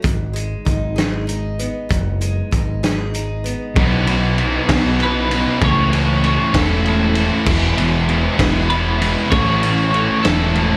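A boxy parlour steel-string acoustic guitar picks arpeggios with slapback echo over a growling, overdriven electric bass and a loose, gritty indie drum kit with a punchy kick, both up front, opening this angsty, quiet-loud alternative rock excerpt in 6/8, heard as a live club gig through the venue's PA. At 3.7 seconds a bright thick fuzz guitar joins from the background with a distorted riff and slapback echo, followed at 3.8 seconds by a dark one playing the same, as the acoustic guitar stops. At 5.0 seconds a clean, compressed twelve-string electric guitar adds a melody, also carrying slapback echo.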